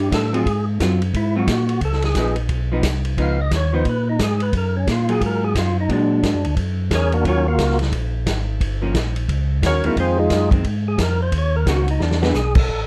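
A swung 4/4 groove drives this soulful soul jazz organ trio excerpt, where a fat, lightly overdriven percussive tonewheel organ solos through slow rotary speaker over the round, mellow overdriven organ bass with chorus vibrato, clean picked hollow-body electric guitar accompaniment and an up-front vintage drum kit with dark cymbals and punchy kick that plays a short fill at 12.0 seconds, all in a dark production with light reverb.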